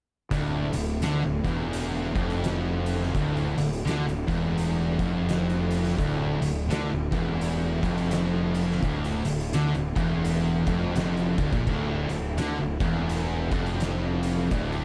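A dark production with light reverb frames this ominous, heavy stoner and doom metal excerpt, swinging at 84 BPM in D minor, with every part sounding from 0.3 to 14.8 seconds over a single D minor chord. A growly, overdriven fingered bass sits up front, while two thick, murky fuzz guitars and a bright, double-tracked, tight distorted guitar grind out the riff in the background. An oversized low-tuned acoustic kit booms in a pumping stone room with a fat snare, punchy kick and shadowy cymbals, and a very quiet, round tonewheel organ holds sustained chords through a rotary speaker with key click and chorus vibrato.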